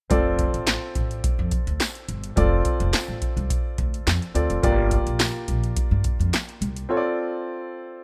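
Set in a rough home-demo mix with audible studio ambience, this smooth, feel-good early-eighties boogie funk excerpt rides on an up-front, tape-warm analog drum machine with a deep kick, punchy snare, metallic hats and handclaps. A woody, thumpy pizzicato upright bass on gut strings and an intimate, clear grand piano with audible action noise move through F6 and Gm7, while a jingly tambourine sits in the background. At 6.9 seconds the groove drops out for a break, leaving the piano alone on a Dm7 chord.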